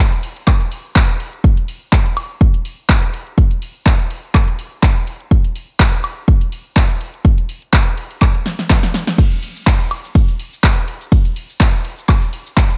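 Feel-good and euphoric, this house excerpt at 124 BPM in 4/4 with a light 16th-note swing opens at 0.1 s on a dry, overdriven analog drum machine with a punchy snare, handclaps, hi-hat, shaker, ride, crash and woodblock, joined at 0.5 s by a layered, tape-warm electronic kick that sits up front with a touch of studio reverb, and a drum fill breaking in at 8.5 s.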